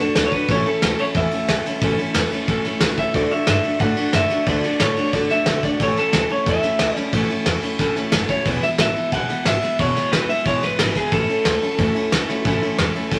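Opening at once on a twangy, slightly broken-up electric guitar melody over a full-bodied dreadnought acoustic guitar with audible finger squeak and a woody, thumpy pizzicato upright bass in the background, this upbeat, retro rockabilly piece gains a roomy brush drum kit with a tight kick, snare and ride at 0.2 seconds, set in a moderate club reverb as the chords move from A to D, back to A, then to E and home to A.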